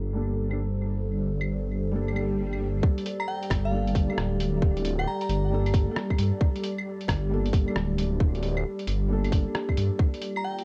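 Future garage with a nocturnal, ghostly mood, this excerpt opens on a warbling, nostalgic pad with chorus and 12-bit grit, a menacing detuned saw bass up front, a mellow felt-muted upright piano with dub echo, and pitched-down sampler-style claves, hi-hat and rim click, all under a filter sweep. An electronic swell rises from 2.1 seconds into the entry of a tight, tape-warm kick at 2.8 seconds, while the bass, pad and piano pump against it. A crystalline FM bell with chorus and dub echo carries the melody briefly from 3.2 seconds, and the echo-heavy, low-passed cassette mix closes on a shift from Gmadd9 to Bb6.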